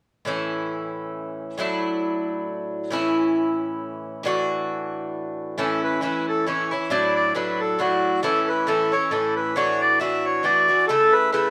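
Bright and cheerful, this fragment of swung Celtic folk in 3/4 at 136 BPM in A major opens with an up-front Irish bouzouki picking its metallic double strings through alternating A and Dadd9 chords from 0.3 seconds, before a reedy, hollow, mid-forward accordion enters at 5.6 seconds to carry the melody in a moderate studio reverb.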